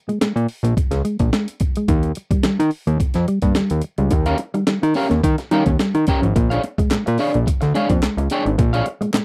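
Energetic, funky 108 BPM funk cut from a longer piece, where a dark, clean electric guitar riff sits over a fat, saturated analog bass with a filter pluck and a gritty, compressed breakbeat kit with thumpy kick, high-tuned snare and hi-hat, joined at 4.1 seconds by a bright, twangy guitar at the edge of break-up and at 6.9 seconds by hollow group handclaps in the background, all in a dry, close 1970s-style studio sound over Bbm7, Eb9 and Bb7#9 chords.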